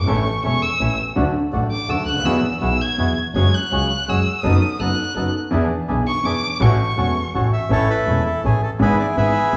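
Rubato phrasing in 3/4 at 166 BPM gives this short tango cut a nostalgic, elegant sway in A major. A bowed violin with focused vibrato and a rich, slightly boxy tone sings up front until 7.5 s, when a dark, vintage-sounding bandoneon takes the melody through to the close at 9.6 s. Beneath them, a concert grand piano accompanies with deep bass and audible action noise, its sound intimate and smooth, while a single bowed double bass adds an earthy, biting low end with an airy, nasal edge. A second bandoneon, reedy and close-miked with a dry, full presence, punctuates the harmony with stabs. The chords move from A through D, Eadd9 and F#sus2 to B7/F# and E7, rest on A6, then return to A before turning toward E/G#, bathed in a wet recital hall reverb.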